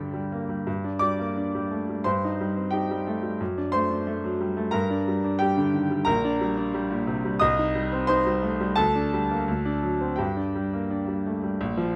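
Classical virtuoso piano study, stormy and agitated in a flexible rubato 2/4, with a clear, smooth, vintage grand piano played solo and up front across a sweeping range under light reverb, its G minor harmony moving through C minor and a D7 before settling home at 10.2 seconds in this brief excerpt cut from a longer piece.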